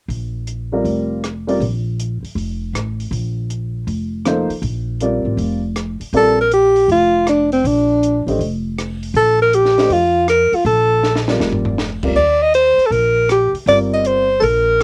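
A breathy alto saxophone, close-miked and up front with vibrato, subtone and scooped notes, takes the solo from 6.2 seconds in this hypnotic, spiritual modal jazz fragment with a swung feel, set over woody pizzicato upright bass, a dark, smooth compact cocktail drum kit with a high-tuned snare and punchy kick that plays a fill at 11.0 seconds, and a natural-sounding baby grand piano, while the sax, piano and drums carry a cassette-tape tint within a homemade recording bathed in light reverb.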